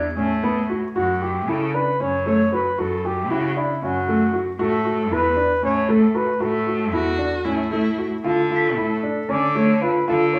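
Contemporary chamber music in an uneven 7/8 meter, this restless, urgent passage moves at a brisk 230 BPM counted in eighths, set in F# Phrygian and cut from a longer piece. A concert grand piano with audible action noise and a vintage, intimate character runs arpeggios throughout, while a biting, intense solo cello carries the bass with vibrato. From 1.0 s a flugelhorn takes the melody, its scooped notes giving it a pop-style, roomy presence. A smooth viola adds a brief second line with even vibrato around 6.9 s, and a mellow glockenspiel struck with rubber mallets rings softly in the background at the opening and again near 8.6 s. The harmony shifts from Asus2 to F#5 and back, then darkens to D minor, and a wet studio reverb places the ensemble further back in the room.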